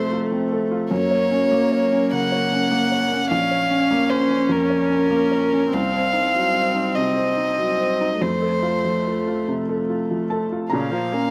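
Neoclassical piano and strings in a melancholic, reflective mood, this short cut from a longer piece moves slowly at 49 BPM in dotted quarters, in 6/8 with a rubato feel. A single violin carries the melody in a close, intimate voice, played sul tasto with an airy bow, soft attack and light vibrato. Beneath it, a felt-muted upright piano supplies mellow, hushed accompaniment across a broad range from Bb1 to Bb5, its thin felt and audible action noise sitting up front. A lone viola adds a warm middle line, also bowed sul tasto with gentle vibrato. The harmony drifts from F through Gb, Bbm and Cdim before returning to F and settling on Bbm at 10.7 seconds, all wrapped in light reverb.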